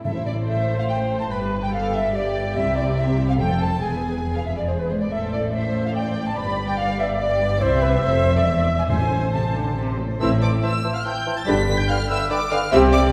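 A quick classical-period movement for symphony orchestra in A minor, this 13-second fragment of a longer piece moves at 143 BPM in 3/4 with an urgent, restless mood. A lush violin section carries the melody from a little back in the mix, while a concert flute and a focused chamber violin section share a second line, the flute airy and expressive with tongued notes. Violas fill in a smooth, even accompaniment, and a bowed cello section and a close double bass section anchor the bass throughout. Timpani struck with hard mallets punctuate the opening and return at 8.9 seconds, as the harmony cycles from A minor through G, C and F to E and an E7 that leads back home. At 10.2 seconds the texture grows as a mellow oboe joins the second line, a close-miked bassoon adds accompaniment, and a very quiet, dark French horn section holds sustained chords from a distance. A wet concert-hall reverb places the ensemble further back in the room.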